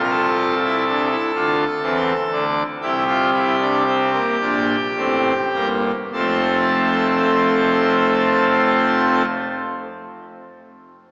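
Elegant and stately, this passage from a baroque-style three-part fugue in F major for solo pipe organ unfolds in a slow 12/8 at 33-44 BPM counted in dotted quarters, its full organ registration with mixtures sounding majestic and brilliant in a romantic voicing, placed up front from 0.0 to 9.3 s across a range of F1 to Bb4 as the tempo slows through the first 6.1 s over F/C and C7 before arriving on F, set in a wet church reverb with a 3.5-second decay yet heard through a small-speaker sound.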